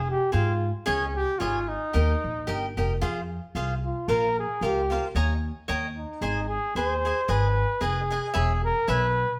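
Recorded live by a band in one stone room with a wet reverb, this festive, proud mariachi piece in Ab major moves at 112 BPM in a swung 2/4, with a mellow trumpet carrying the melody in classical style with light vibrato and a smooth top, a punchy, close-miked trumpet playing a second line with vibrato from 0.9 to 2.8 seconds before the first trumpet returns at 3.8 seconds, a bright, crisp picked cavaquinho supplying accompaniment, and a woody, growly pizzicato upright bass with steel strings holding the low end, all placed up front.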